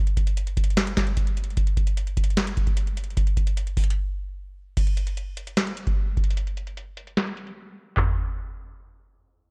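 Dry and dulled by a low-pass filter, this melancholic, dark hip hop excerpt puts a booming analog drum machine up front. Its deep kick, crisp snare, handclaps, metallic hi-hats, toms and crash cymbal move in a half-time feel at 150 BPM, with a short room on the snare, clap and hats. The beat breaks at 4.0 seconds, a filter sweep runs from 4.8 seconds, and the drums stop at 8.1 seconds.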